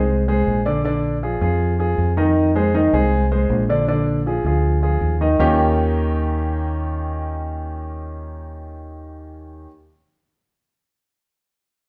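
Lively and sunny, this short cut from a longer Afro-Cuban jazz piece moves at 158 BPM in a straight 4/4, centred on Eb mixolydian. A grand piano with a natural, up-front tone carries the accompaniment from start to finish, voicing chords that move from a rootless Fm through Bb7 and Fm7 before settling on Eb9 at 5.4 seconds. Underneath, a fingered electric bass sits low and close, its sound dark, round and directly amped, holding a narrow register between Bb1 and F2. The change to Eb9 marks a shift into a new section that runs to 8.4 seconds. The two players sound like a band performing live in one room, wrapped in a wet large-studio reverb that gives the piece a roomy, open finish.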